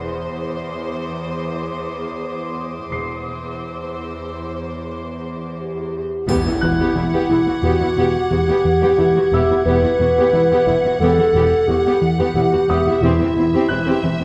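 The 5/4 pulse at 89 BPM carries this mysterious, tense suspense film score excerpt, where a lush violin section sings the melody over a rich cello section and a clear, very quiet double bass section on a low E, a second smooth, close violin section plays high above, a bright, brilliant piano glimmers in the background from 2.9 seconds, a dark, punchy clarinet adds a second line from 5.6 seconds, and at 6.3 seconds, as the harmony turns from C/E to Emadd9, an even viola section, a fat, detuned sawtooth analog bass riff, a brief triangle and a distant electronic impact join, all set in a moderate scoring stage reverb.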